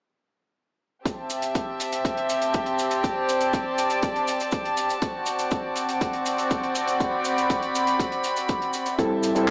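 A sleek, groovy nu-disco fragment opens at 1.1 s with a nasal, gut-string violin section holding sustained chords over Am7 and D7, pumping with sidechain and tinged by cassette tape, alongside a punchy, overdriven electronic kick, a dry, damped 70s drum kit of handclaps and hi-hat, and a band-limited cabasa in the background, before a reedy electric piano with fast tremolo arrives up front at 9.0 s, the mix sitting in a moderate spring reverb with a small-speaker, home-cassette sound.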